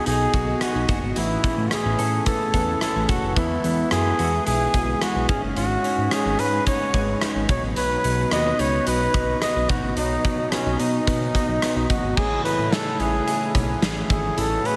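A dreamy mix soaked in a huge ambient reverb gives this short cut from a longer 1980s-style pop piece a nostalgic, romantic glow at 109 BPM in a straight 4/4. Up front, a warm flugelhorn carries the melody with vibrato and scooped notes, its tone trailed by a diffuse ambient delay. A bell-like tine electric piano with analog chorus supplies the accompaniment, while a clean, compressed electric guitar, recorded direct, picks a riff in the background through chorus and delay. Underneath, a fat analog bass with a fast attack and mellow sustain joins a punchy big rock drum kit set in a bright stone room, with crash, hi-hat, kick, rim click and a medium-tuned snare. The harmony moves through B, Aadd9, E and G#sus4, and at 12.2 seconds it settles on Amaj7 as a shimmering, retro pulse-width pad slowly enters with sustained chords.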